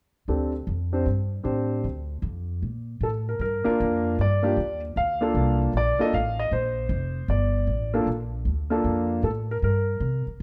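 Jazz piano trio in a smoky, cool mood, taken at a swinging pace in four. A grand piano carries the melody from 0.3 s to 10.2 s, sounding intimate and natural, with audible action noise and a long sustain that lets its notes hang in the air. Beneath it, a pizzicato upright bass on steel strings holds down the low end with a woody, thumpy tone, running until 10.4 s. Both instruments sit up front in a dark production touched with light reverb, giving a close, late-night feel. The harmony moves from a suspended dominant into minor colours before settling on a bare open chord near the close of this short cut from a longer performance.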